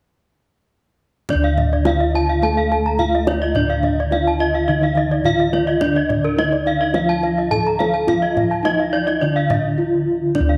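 A dark, smooth bronze metallophone, struck with a horn mallet and placed up front, spins arpeggios high above this hypnotic, shimmering Balinese gamelan passage, cut from a longer piece in D pelog at 106 BPM in a straight 4/4. Beneath it, a mellow metallophone played with padded disc mallets carries the melody, while another soft metallophone sits in the background with a mid-forward accompaniment an octave lower. A second arpeggio metallophone, struck with a wooden mallet and heard close and dry, joins at 1.6 seconds and drops out at 9.6 seconds. Round, full bossed gongs anchor the bass, and a deep kendang played with soft hands adds percussion with a live-room tone. The paired tuning gives every metallophone a ringing, beating shimmer, and a moderate echo-chamber reverb lets the ensemble hang in the air from its entry at 1.3 seconds.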